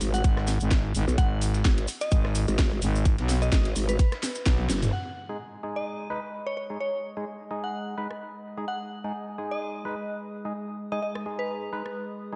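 Two growling basses stand out in this bouncy, gritty bass house passage, cut from a longer piece at 128 BPM in G# minor with a swung sixteenth feel: a wobbling, aggressive growl bass with overdrive and chorus, and a thick FM bass with tube saturation, both pumping against an overdriven, tight electronic kick up front. The drop runs through the opening 4.9 seconds, where a garage drum kit with a cracking snare, a very quiet dusty soul sampler-style kit recorded in a small room, and a grainy cabasa in the background fill out the groove before a drum fill and band accent close it. A glassy synth bell with tremolo, 12-bit grit and diffuse delay sings in a high register across nearly the whole clip. Once the drop ends, the basses and kick fall away, and from 5.3 seconds a nasal, hollow organ stab and a warbly, nostalgic tape-like pad with slow attack and built-in reverb take over, still pumping to the sidechain, while the garage kit returns only in brief bursts. 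The mix sits in light digital ambience with a dark, rolled-off top end.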